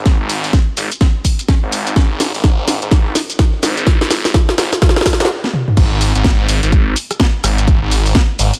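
Gritty and aggressive, this short bass house excerpt at 126 BPM with a swung 16th feel pairs a thick, swirling detuned saw bass, saturated and pumping under the beat, with a punchy electronic kick and a garage drum kit of cracking snare, bright hats, shaker, rim clicks, toms and crash cymbal, building through drum fills to a stop at 5.3 seconds before the drop hits at 5.8 seconds, all set in light reverb.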